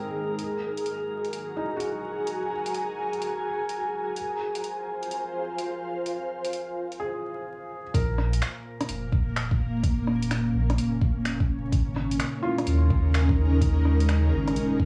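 Nocturnal and wistful, this future garage piece in Bb minor moves at 127 BPM with a swung 16th feel, opening on an ethereal, detuned pad that pumps up front beside a felt-muted upright piano, soft and intimate with audible action noise and analog delay, while a glassy harmonics texture drifts faintly in the background until 7.0 s. Layered garage drums with bright hats, finger snaps and rim clicks tick through chords moving from Gbadd9 to Fm, and after a brief break a deep, round sub bass with tube saturation pumps alongside an overdriven electronic kick from 7.9 s as the harmony shifts to Bbm and Absus4. A light reverb, cassette character and vinyl crackle give the whole a dusky, lo-fi haze.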